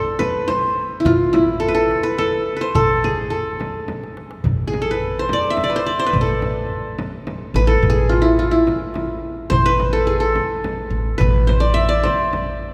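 Moving in a straight three-beat metre, this longing, melancholic Arabic maqam ensemble piece is led by a bright-edged, plectrum-plucked qanun up front, its triple strings ringing over a woody, thumpy pizzicato upright bass on gut strings. A clay-shelled darbuka with natural skin and a frame drum played with soft hands sit close yet in the background, and a drum fill at 3.9 seconds leads into a new section at 4.4 seconds. The ensemble is bathed in a long, wet church reverb, and the recording is cut from a longer piece.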